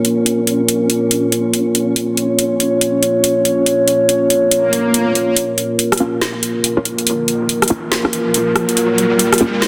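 Deep dubstep in Bb minor at 141 BPM with a swung, half-time feel, meditative and heavy, cut from a longer piece. A dark, wave-folded analog pad with chorus holds sustained chords up front alongside an electronic garage kit of metallic hats, rim clicks and a woody, softly clipped snare, while a flickering, grainy granular texture sits in the background until 5.4 seconds. From 4.6 seconds a swell rises, and at 5.4 seconds a riser carries the build-up. A muted, detuned sawtooth dub chord stab enters at 6.0 seconds with lush chorus, dub echo and a filter sweep, all in a moderate echo-chamber reverb under a dense, heavily limited master.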